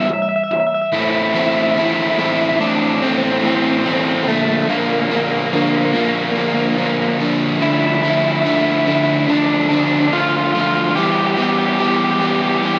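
Brooding yet cathartic, this short rock excerpt moves at a slow 72 BPM in a straight 4/4, centered on A minor. A crunchy overdriven guitar, double-tracked and up front, drives a picked riff that spans A2 to A4 across the full 12.8 seconds. Above it, an electric guitar through a small old amp carries the melody between A3 and E5, its slightly broken-up, lo-fi tone compressed and thrown back by a slapback echo. The harmony passes from Em to Am at 0.9 seconds, then through Bb and Dmadd9 before returning to Em at 11.0 seconds. Light reverb and a digital ambience frame the two guitars, lending the dark chord movement a gritty, intimate glow.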